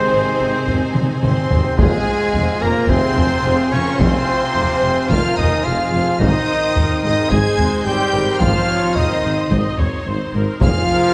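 An epic, heroic orchestral film-score passage in F minor at 109 BPM opens with lush bowed violins carrying the melody over an airy flute, a second violin line, smooth violas, sustained chords from tight trombones, distant dark horns and a rich string section, a mellow trumpet's stabs, and a bass of woody cellos, mellow tuba and woody double basses. Taiko drums struck with hard sticks enter at 0.7 seconds in a large, distant space, with a drum fill from 1.0 to 1.8 seconds before the harmony moves between Ab and F minor. Soft-mallet timpani land at 10.6 seconds, and the whole passage sits in a wet scoring-stage reverb.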